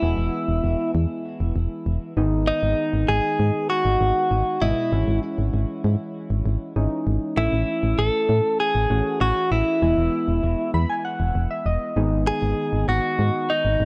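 A straight 4/4 pulse at 98 BPM drives this nocturnal, cool synth-pop excerpt, cut from a longer piece, as chords move from E through G#m, C#m/G#, and A before returning to E and G#m. A punchy, round, dark FM bass sits up front beneath soft, mellow electric-piano-like synth keys, whose triangle and sine tones carry wave-folding, ring modulation, a filter sweep and chorus, with a brief keys fill at 10.4 seconds. Alongside them, a clean, picked, direct-recorded electric guitar carries the melody, compressed and up front with phaser and tape echo, in a dry, gritty hardware recording with light reverb.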